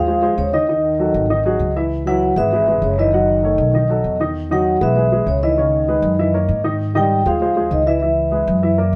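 Afro-Cuban jazz at a sunny, danceable 196 BPM in straight 4/4, with a ringing, airy vibraphone on soft mallets carrying the melody over a breathy, whispered trombone second line, a dark baby grand piano with audible action noise accompanying, and a thumpy, woody pizzicato upright bass on gut strings, all four playing together from 0.0 to 9.0 s as a live band in a moderate stone room.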